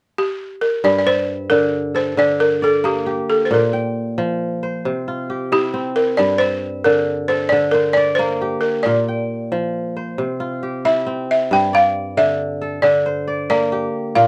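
Lightly reverberant and close, this reflective, hypnotic West African traditional piece in G Dorian, cut from a longer work and tuned to A4 = 436 Hz, moves at 90 BPM in a straight 12/8, with a woody, buzzing balafon struck with rubber mallets carrying the dry, up-front melody from 0.2 seconds while a crisp, ringing fingerpicked kora joins at 0.8 seconds with arpeggios cycling through Gm, Bb and C.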